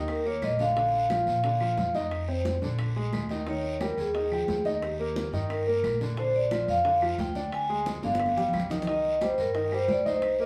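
Set in a moderate studio reverb with the band playing live in one room, this lively, sophisticated fragment of Afro-Cuban jazz at 178 BPM in Bb mixolydian puts a metallic, ringing vibraphone up front on the melody over smooth, vintage grand piano chords and a dark, pizzicato upright bass, while bright, high-tuned, compressed congas sit in the background with very quiet, round, low-tuned bongos, distant woody claves and a raspy guiro, before a drum fill at 8.0 seconds.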